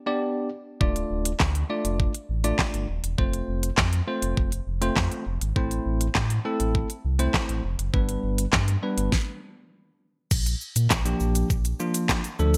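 A clean, bell-like tine electric piano opens this bittersweet, energetic dance-pop excerpt at 101 BPM, joined at 0.8 seconds by a deep, full sine-and-triangle sub bass with octave and sidechain pumping, and by an up-front layered electronic pop kit of knocking kick, fat snare, crisp hats, handclaps, shaker and crash, moving through G, Dm, F and Am until a stop at 9.1 seconds gives way to a Bb6 chord at 10.3 seconds, set in a bright 1980s-style digital production with light reverb.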